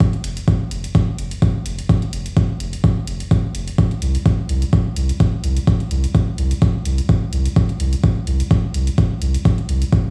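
A deep, tape-warm electronic kick drum sits up front from the first moment, alongside a faint, layered electronic hi-hat that sounds re-recorded in a small room, driving a hazy dub techno groove at 127 BPM in 4/4 with a light 16th-note swing and tuning of A4 = 443 Hz. At 0.2 s a round, soft sub bass with a square-wave edge and fast attack arrives up front, sustaining between F1 and C2 while sidechain pumping makes it breathe. Cut from a longer piece, this single section carries the air of a big sound system in a bare stone room.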